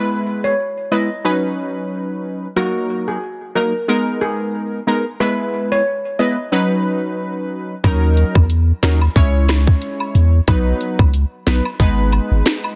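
Swung sixteenths drive this sultry, tough dancehall excerpt at 91 BPM in 4/4, set in Eb phrygian over chords that move from E and Badd9 toward Ebm7, Dbm, B and Abm. A shimmering steel pan carries the melody from the opening, its bright, airy lead struck with hard rubber sticks and trailed by delay, and it drops out at 6.4 seconds. Beneath it, a detuned sawtooth synth brass stab with chorus plays brassy, punchy filter-plucked chords that decay and continue throughout. At 7.8 seconds the groove fills out as an electronic island pop drum kit arrives up front, with a tight kick, sharp snare, finger snaps and warm hi-hats roughened by vintage 12-bit sampler grit. At the same point, a deep, punchy sine sub bass enters with a pitch-drop attack and sustained notes, while close, dry woodblock, cabasa, egg shaker and group handclaps sit in the background. Light reverb and a dense, heavily limited modern master keep the whole sound tight and forward.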